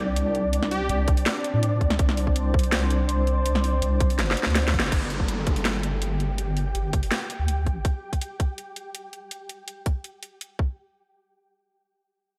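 A dark, detuned analog pad pumping against the sidechain opens this spacious, heavy half-time drum and bass excerpt, alongside a deep wobbling bass and a grainy, flickering granular texture in the background, with an up-front kit of cracking snare and bright hats arriving almost at once. A brief punchy sawtooth lead darts past, and by 1.1 seconds a tight electronic kick joins; both kick and kit are overdriven. After a drum fill and band accent, the harmony shifts at 4.9 seconds as a filter sweeps the pad and a downlifter falls, all within a dreamy, lush hall reverb.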